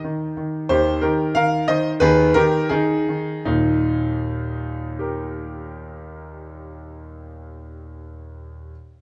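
A graceful, cheerful classical-period piano sonatina in Eb major, taken from a longer piece, moving at 78-92 BPM in a straight 2/4 with a slowing of pace through its opening 3.5 seconds. A clear concert grand piano plays solo from Eb2 to F5, its sound open and up front with a deep bass, captured by close, detailed microphones. A moderate recital hall reverb surrounds the instrument, and the harmony rests on Eb with a turn to Ab5/Eb at 2.0 seconds before settling back on Eb.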